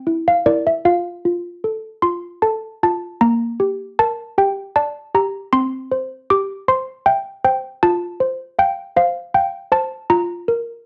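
Malleted handbells open this fragment, playing solo as a dreamy, tender classical lullaby in a lilting 6/8 with a straight feel. The bells sound mellow and damped, their short notes struck with soft clappers and close-miked so they sit full and up front, spanning from Bb3 up to D6. A moderate studio reverb gives the otherwise dry bells a gentle halo, and the cassette tape recording adds a homely, intimate character. The harmony moves from a C7 into F, then a new passage begins at 3.2 seconds over Gm/Bb, drifting to C and back to F. The clip closes on a Bb5/F chord arriving at 10.1 seconds, leaving the lullaby suspended mid-phrase.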